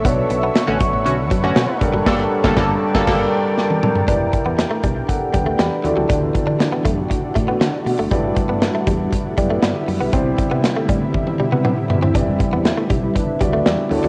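A straight 4/4 groove at 119 BPM drives this glossy, uplifting 1980s-style pop excerpt, where an up-front, dark, tight-kicked studio drum kit and a round, punchy fretless bass sitting in the background support a deep-voiced grand piano, a shimmering, ethereal pad with detuned chorus, and a clean, compressed electric guitar riff with tape echo. A bright, funky sawtooth polysynth stabs in from 0.7 to 3.2 seconds, overlapping the start of a band accent and ending ahead of a drum fill, before the chords move from Em7 toward Cadd9, all wrapped in a lush hall reverb and hazy cassette coloring.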